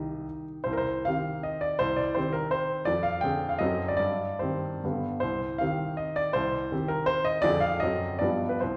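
A clear, polished baby grand piano plays alone through a wistful, capricious romantic classical dance in triple time, its dotted rhythms pushed and pulled with rubato as the harmony darkens through diminished chords before resolving to the home chord and then leaning toward a dominant seventh, all set in a wet recital hall heard from further back, in this brief passage cut from a longer piece.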